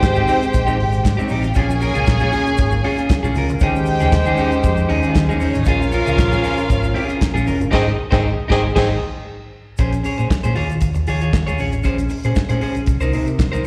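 Sultry and glamorous, this disco excerpt moves at 117 BPM in Bb dorian, with a damped 70s drum kit (tight kick, dark cymbals, handclaps) and a punchy, amped fingered bass up front, while a slightly broken-up, compressed electric guitar picks out accompaniment and a grainy egg shaker sits in the background. A lush, bowed string section with vibrato carries a second line and a punchy horn section adds stabs, both touched by slapback echo like the guitar, before strings and horns stop at 8.9 seconds, partway through a band accent that runs from 7.7 to 9.8 seconds. The sound has the feel of a live gig through a venue's PA, with recital hall reverb and light small room ambience, as the chords move from Abmaj7 and Bbm7 to Bbm9, Eb9sus4 and Cm7 after 9.8 seconds.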